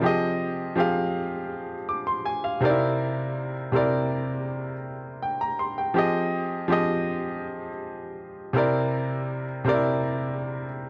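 R&B piano piece at 81 BPM in F dorian, with a late-night, sensual mood, played on a clear baby grand that sits up front with a natural, short-sustained tone across a range from C3 to D6. The harmony moves between Fm7 and C7 over this brief cut from a longer piece, lasting about 10.9 seconds. Light studio reverb surrounds the piano, and the whole recording carries the worn character of old cassette tape, with warbly pitch drift giving it a warbling wobble.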